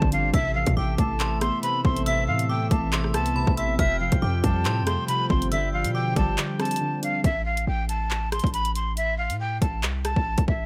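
A tense, dark drill hip hop cut in a half-time feel, where a breathy jazz flute with vibrato and delay carries the melody over warbly, detuned lo-fi synth keys, distant classical-style brass chords, a ringing, inharmonic FM bell line, a punchy sine-based 808 bass and a hard-clipped electronic drum kit of handclaps, bright hats, kick and rim click. The bell line ends at 6.4 s, when the kick also briefly mutes until 7.2 s, and the keys and brass stop by 7.3 s, leaving the dry, up-front flute, bass and drums to close.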